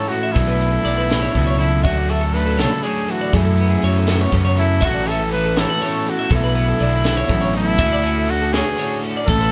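This short excerpt of math rock with a midwest emo touch opens with a clear, up-front trumpet carrying the melody over two clean, picked twelve-string electric guitars and a crunchy overdriven guitar riff, all sounding together from the very start. The mood is playful and intricate, moving at 81 BPM in a straight 6/8, with the harmony cycling through Bm9, Dmaj7, F#m11 and A6 before returning to Bm9 and Dmaj7. One twelve-string sits in the background with compressed accompaniment, while the other adds bright, twangy arpeggios in a higher register colored by tremolo. The double-tracked overdriven guitar stays back in the mix, and a crisp fusion drum kit with a high-tuned snare, punchy kick and hi-hat comes in at 0.1 seconds. At 0.4 seconds a growly, fuzz-soaked fingered bass arrives prominently in front, giving the low end real bite beneath the trumpet's lightly vibrato-tinged pop phrasing, all set in a moderate studio reverb that suggests a band playing live in one room.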